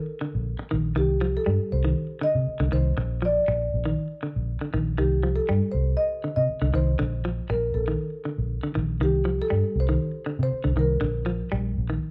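Afrobeat at 119 BPM in C dorian, funky and hypnotic, where a woody, mellow marimba with soft mallets carries the melody over clean, hollow-body electric guitar arpeggios and a dark, round, foam-muted fingered bass entering at 0.3 seconds, all up front in a live-room sound with light reverb as the harmony sways between Bb and C minor chords in this short cut from a longer piece.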